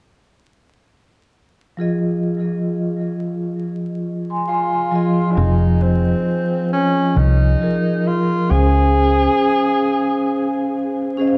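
Lo-fi hip hop in F minor at 67 BPM, this short cut from a longer piece has a hazy, reflective mood and a lazy swing on the sixteenths. A vibraphone played with medium mallets enters at 1.8 s on an Fm7 chord, its metallic, ringing tone shimmering with fast motor vibrato and softened by cassette tape colour, a low-pass filter and tape echo. At 4.5 s a breathy tenor saxophone takes the solo melody in a jazz style, with soft attacks, scooped notes and light vibrato, its mellow voice likewise filtered and echoed. A deep dub fingered electric bass joins at 5.4 s, dark, round and foam-muted, sitting up front until 9.3 s, while the harmony moves to Dbmaj7 at 8.5 s. Moderate spring reverb, small room ambience and vinyl crackle give the echo-heavy mix its dusty, intimate feel.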